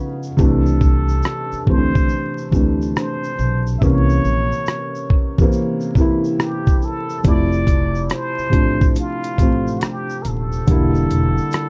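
A soft, felt-muted upright piano opens this hazy, nostalgic lo-fi hip hop excerpt at 70 BPM with swung 16ths, joined at 0.2 s by a grainy shaker in the background and at 0.4 s by a breathy, distant plunger-muted trumpet melody with a wah-wah colour, a woody pizzicato upright bass, and a gritty, compressed sampler-style drum kit of thumpy kick, hi-hat and rim click with vintage 12-bit crunch, over a progression of C69, C7b9, Fmaj7 and Em7b5 in a dark, dry mix dusted with vinyl crackle.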